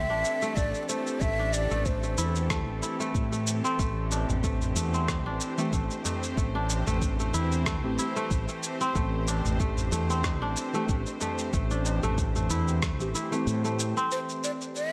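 Meditative and mystical, this organic downtempo excerpt moves at 93 BPM in A minor pentatonic, with a breathy, end-blown ney carrying the melody in brief phrases at the start and again at 14.1 seconds, over a tense, string-like drone, crisp fingerpicked kora arpeggios, a punchy fretless electric bass, a gritty shaker and rim click, a deep electronic kick, faint ringing tabla from 4.1 seconds, and a dark, warbling chord stab that enters in the background at 5.6 seconds.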